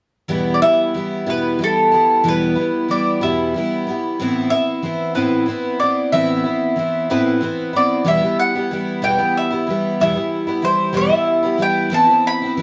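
Heard live in a stone room with moderate reverb, this reflective, dusty acoustic rock fragment in E minor moves at 62 BPM in a straight 6/8, as an up-front, shimmering, octave-doubled picked twelve-string guitar lays down the Em to Amadd9 accompaniment from 0.3 seconds and a mellow, round, double-strung mandolin carries the melody from 0.5 seconds, the pair cycling through those two chords again when the second section begins at 8.1 seconds.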